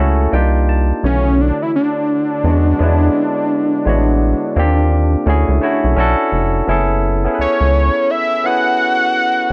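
A fat, detuned sawtooth lead with vibrato and a sub-octave enters at 1.1 seconds over a barky, lightly overdriven tine electric piano, which opens with a brief fill, and a rubbery, hollow square-wave bass, all up front and dry in this smooth, introspective neo-soul R&B passage at 85 BPM with swung 16ths, moving through rich ninth chords from Cm9 and Bm9 to Amaj9 before settling on F#m9 at 6.7 seconds.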